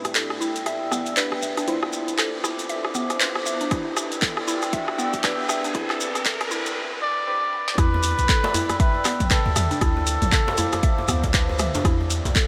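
A swung sixteenth-note groove in four drives this hypnotic, warm afro house piece. An up-front deep house kit of handclaps, dark hats, rim click, woody snare and toms plays over the grainy shekere in the background, and a deep, layered electronic kick joins at 3.7 seconds. Underneath, a boomy 808-style bass with a sine body and noise layer carries sidechain pumping, while a moody, detuned analog pad holds sustained chords through chorus and phaser. Through the build-up, a mallet-like FM pluck spins woody, warbling arpeggios through delay and round analog key stabs sit in the background, both under filter sweeps, as a very quiet riser sounds beneath them. At 7.0 seconds a cup-muted trumpet begins a soft, breathy, jazz-style solo with light vibrato and delay, and after a drum fill the drop lands at 7.8 seconds, when the keys stop and a hard-handed djembe with metal rattles enters in the background. 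The mix is soaked in a huge, dreamy ambient reverb.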